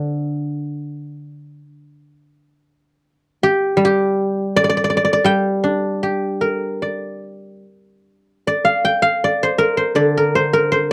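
A solo guzheng opens this short, contemplative cut from a longer piece of Chinese traditional music, its silvery, ringing tone plucked with fingerpicks and set up front in a dry, close 1970s-style studio sound touched by light reverb. Moving in a free, rubato 4/4 at roughly 71-87 BPM in the G yu mode, the instrument spans from D3 to G5 with an elegant, mellow voice. Around 8.5 seconds the music turns to a new section, which carries on until the cut ends at 10.9 seconds.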